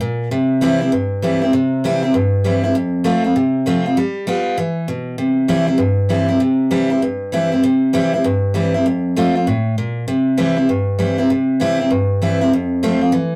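A picked steel-string acoustic guitar plays alone from the very start, carrying this rollicking, upbeat rock fragment in C major at a brisk 196 BPM with a swung eighth-note feel. Its dreadnought tone is bright and full-bodied, sitting up front in a rough rehearsal-room sound with warm saturation and a short, moderate booth ambience. The opening section moves through C, F and G7 before settling back on C, and a second section begins at 6.4 seconds, returning to F and C. The guitar ranges from F2 up to F4, and the tuning sits slightly sharp of standard pitch. Cut from a longer piece, the clip ends at 13.4 seconds on an F chord.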